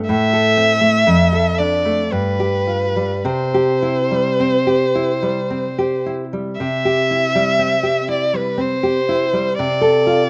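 This is a romantic duo for violin and classical guitar in C major, tender in mood and unfolding in a slow, rubato 3/4 at around 51-64 BPM. The nylon-string guitar opens at the very start and carries the accompaniment, fingerpicked with a full-bodied, deep classical tone and a touch of slapback echo. The violin joins almost at once to sing the melody in a close, up-front voice, bowed by a single player with soft attacks, vibrato and expressive portamento. The harmony moves from Am through Dm/F and G7 to C, and the opening phrase returns at 6.6 seconds before the passage settles on Dm7/C. Light reverb gives the outdoor recording an intimate, glowing sound, and the piece breaks off at 10.3 seconds as a short cut from a longer work.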